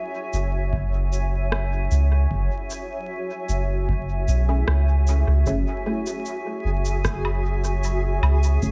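A round, soft dub sub bass sits up front in this hazy, meditative ambient dub excerpt at 76 BPM in 4/4, holding deep notes from F#1 to C#2 beneath a cloudy granular pad that opens the piece with sustained, blurred chords. Electronic shaker, rim click and woodblock arrive almost at once, carrying studio reverb and dub echo, while a tape-warm electronic kick drum rests in the background. At 4.5 seconds a muted, dark filtered chord stab enters, its detuned sawtooth tone shaped by a moving notch, phaser, subtle chorus and dub echo. The harmony moves from F#7sus2 to F#m9 at 5.5 seconds, and at 6.2 seconds a reversed, dreamy swelling texture appears on G#4, bright yet kept in the background. Vinyl crackle runs throughout, and the room itself carries little reverb.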